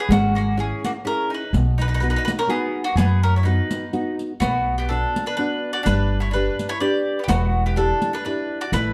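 Italian folk serenade in a sunny, lively 3/4 at 125 BPM with a light swing, cut from a longer piece, moving from B major into B minor at 4.4 s. A warm, up-front bowl-back mandolin carries the picked double-string melody over a brighter second mandolin line, while a full-bodied nylon-string guitar gives thumb-plucked classical accompaniment. A woody pizzicato upright bass sits up front, and a compressed, saturated riq adds dark jingles, all in a dusky production with light reverb.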